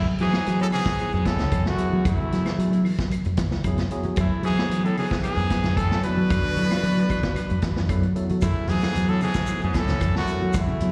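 Heard as a live gig through the venue's PA, this excerpt sits in a recital hall with light reverb around it. It is intense, funky afrobeat at 113 BPM in a straight 4/4, in F# minor, moving from F#m7 to Bm7 at 4.2 seconds and back to F#m7 at 8.4 seconds. A clear trumpet with light vibrato carries the melody. Behind it, a breathy alto saxophone with scooped notes and a punchy, vintage-toned baritone saxophone with vibrato play second lines, both set back in the mix, with slapback echo on each and added tape echo on the baritone. The dark, round fingered electric bass is the loudest part. The acoustic vintage drum kit sits close, with a medium-tuned snare, a punchy kick, hi-hat and a rolled-off top. A clean semi-hollow electric guitar plays fingered hollow-body arpeggios, and a worn, slightly out-of-tune tine electric piano adds lightly overdriven, mellow accompaniment, both in the background with slapback echo. 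Very quiet woody claves tick along from 0.3 seconds, and a grainy shekere joins at 8.4 seconds.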